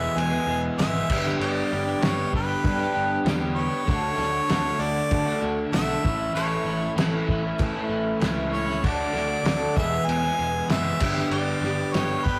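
This 12.4-second excerpt from a longer folk rock and heartland rock piece opens with a clear, punchy harmonica carrying the melody up front over a shimmering, octave-doubled twelve-string acoustic guitar, a slightly broken-up electric guitar riff, picked electric bass and a soft, flute-like tonewheel organ holding sustained chords through a slow rotary speaker. A cloth-damped, thuddy drum kit comes in at 0.2 seconds with a fat snare, tight kick and dark crash cymbal, and a distant, jingly tambourine joins very quietly at 0.8 seconds. The tempo sits at a steady 97 BPM in straight 4/4, moving through E, G, D and A chords with a nostalgic, jangly mood. The acoustic guitar has a boxy body, while the electric guitar's scooped tone sits at the edge of break-up and the bass stays direct and warm. The whole excerpt carries the rough feel of a rehearsal room, with warm saturation and a wet stone room reverb giving the sound a lived-in glow.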